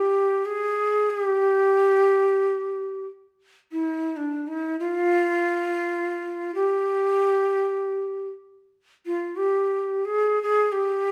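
Stately and festive, this passage from a longer Turkish makam piece unfolds in free time in G makam hicaz, carried by a solo ney across its 11.1 seconds. The end-blown reed cane sits up front with a breathy, straight tone and crisp attack, phrasing expressively between D4 and Ab4. A moderate large-studio reverb gives the live-in-one-room performance a spacious air.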